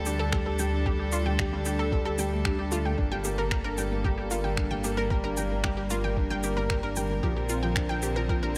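A softly lit, lightly reverberant mix opens this hypnotic, moving excerpt of piano and strings electronica, where a felt-muted upright piano with audible action noise plays a mellow riff through digital delay over distant, earthy chamber strings holding sustained chords, a deep, rumbling detuned saw bass with tube saturation sits up front, a round analog pluck with chorus and delay spins bright arpeggios, and a muffled, thumpy kick with electronic shaker and finger snaps drives the pumping pulse as the harmony moves from Dsus4 to Gmadd9 at 3.0 seconds and Bbadd9 at 7.2 seconds.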